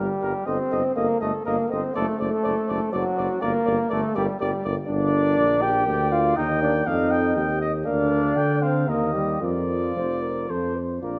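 A classical brass quintet plays together from the first moment, in a stately, triumphant passage in 3/4 at 121 BPM, shaped with rubato, that opens in G minor and turns to Bb major at 4.9 s. A mellow, distant trumpet carries the melody while a close-miked flugelhorn sings a second line, the roomy French horn sits in the background, the trombone fills out the accompaniment, and an up-front, warm tuba holds the bass, with every part colored by light vibrato. The ensemble sounds in the moderate reverb of a scoring stage, and the harmony comes to rest on F at 10.5 s in this section cut from a longer piece.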